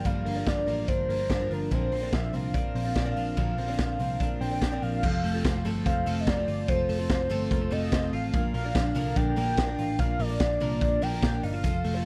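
A dry, close recording with little reverb opens on a short cut of jangly indie pop in 4/4 with a straight, breezy feel and a nostalgic mood. A velvety synth lead carries the melody, its detuned sawtooth voice smoothed with chorus, vibrato and a slapback echo. Beneath it, a picked twelve-string acoustic guitar shimmers with octave-doubled strings, while a bright, twangy twelve-string electric guitar plays compressed, clean arpeggios. A dark, round, foam-muted electric bass sits low, and a gritty, saturated garage drum kit sits up front with a boomy kick, dark cymbals and a pumping small-room sound. The harmony moves from Gm7 to Bbadd9, then settles onto F as the second section begins at 5.0 seconds, moving to Bb at 8.3 seconds.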